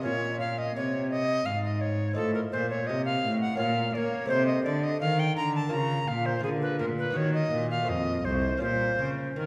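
Classical baroque-style sonata movement with continuo, flowing and solemn in a moderate triple metre, in which a bright, pure tenor recorder with vibrato and a tongued chiff carries the expressive melody up front over a delicate fingerpicked lute on double gut strings and a rich, reedy period-style cello bowed by one player, all heard from further back in a wet recital hall in this short cut from a longer piece.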